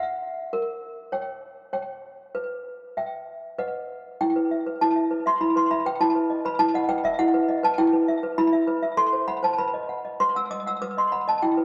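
A clanky, bell-like toy piano, slightly out of tune, plays alone throughout this eerie, wistful classical lullaby in three-four time, its slapback echo and a wet spring reverb placing it further back in the room as the piece moves from its opening section into a second one at 4.2 seconds, before the excerpt is cut from a longer work.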